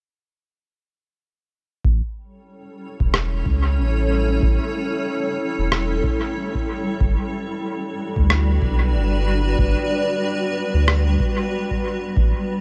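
Bathed in light digital ambience, this hazy, peaceful stretch of ambient dub in a swung 4/4 opens at 1.8 s with a deep, round sub bass and a tape-warm analog kick, joined at 2.8 s by an up-front, cloudy, detuned granular pad with its own built-in reverb moving from A7 to Gmaj7, while a muffled, pitched-down rim click with dub echo sits lowest in the mix from 3.1 s.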